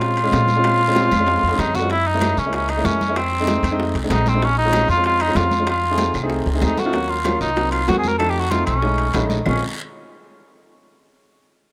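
A breathy cor anglais with light vibrato and a soft attack sings the sultry lead up front from the first second of this driving Afro-Cuban jazz excerpt, over a woody, natural upright piano and a thumpy pizzicato upright bass. Ringing high-tuned congas sit in the background alongside very quiet round bongos and metal-shell timbales, with distant claves joining from 0.2 seconds, plus a raspy guiro. Drum fills break through twice, and the piano adds a short fill at 9.0 seconds in this rough home demo with light small-room reverb, cut from a longer piece.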